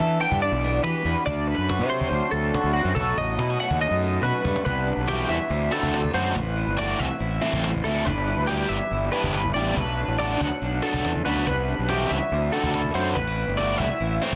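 A straight 4/4 pulse at 141 BPM in E minor drives this restless, intricate math rock and midwest emo passage, cut from a longer piece. A snappy cajon with soft hands sits under a punchy, fuzz-laden fingered bass, while a bright, twangy twelve-string electric guitar with analog chorus plays arpeggios over a lo-fi, slightly broken-up guitar through a small old amp with phaser, moving through extended chords such as Em7, Cmaj9 and Am9. At 5.1 seconds a biting, double-tracked overdriven guitar riff enters up front, after a drum fill at 4.2 seconds, all under light reverb and a dense, heavily limited modern master.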